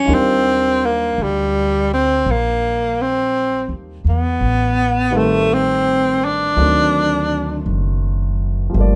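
A breathy tenor saxophone opens over a warm concert grand piano and woody, pizzicato upright bass in this tender, romantic jazz ballad excerpt, moving at a slow 56 BPM with a swung feel. The sax sits up front with clear vibrato and scooped notes, its melody falling silent at 7.7 seconds while piano and thumpy bass carry on to 9.0 seconds. Light reverb surrounds the trio as the harmony passes from Ebmaj9 through Am7b5 to D7b9.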